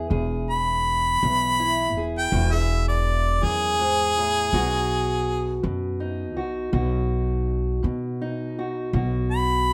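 This acoustic country blues fragment, cut from a longer piece, has a swaggering, soulful mood and moves in a straight 12/8. A bright harmonica carries the melody from 0.5 seconds, sitting up front and close-miked with a plate reverb. Its jazz-style solo uses soft attacks, scooped notes and a light vibrato. Underneath, a fingerpicked steel-string parlour guitar supplies a dark, boxy accompaniment. An upright bass, also up front, adds thumpy, woody pizzicato on gut strings. A light reverb surrounds the small group, and the harmony moves from E to B at 4.5 seconds.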